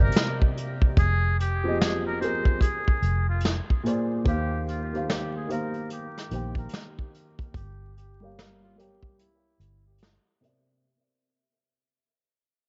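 An echo-heavy, lo-fi hip hop excerpt with vinyl crackle and a dulled top end, hazy and reflective, moving at 73 BPM in C minor with a swung 16th-note feel. A buzzy, breathy trumpet with metal mute carries the melody through low-pass filtering and tape echo. Beneath it are a dark, woody upright piano that runs from Cm7 through Fm7, Bb7, Eb6 and Gm7b5 before reaching C7 at 9.2 seconds, and a round, foam-muted electric bass. An up-front brush kit with a punchy kick adds 12-bit sampler grit, and the whole excerpt fades out under a filter sweep throughout, with a break from 9.2 seconds.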